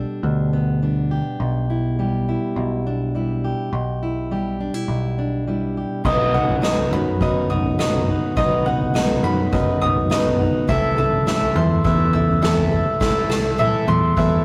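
Indie folk with a building arrangement and an anthemic mood, moving at 103 BPM in a straight 4/4. A full-bodied, plugged-in jumbo acoustic guitar is fingerpicked up front over a round, punchy electric bass, moving from Gadd9 to Em7/B. At 6.0 seconds the arrangement grows: a bright, picked auditorium acoustic guitar and a drum kit played with soft mallets, with dark cymbals and a boomy kick, join as the harmony shifts to B, and a moment later a warm mandolin enters, its double strings ringing out in high arpeggios. The fingerpicked guitar drops out at 10.7 seconds as the chord turns to Am/C, and the drums close with a fill from 13.0 seconds. The whole take sits in a moderate stone room with a rough rehearsal-room character and tube saturation, and it is cut from a longer piece.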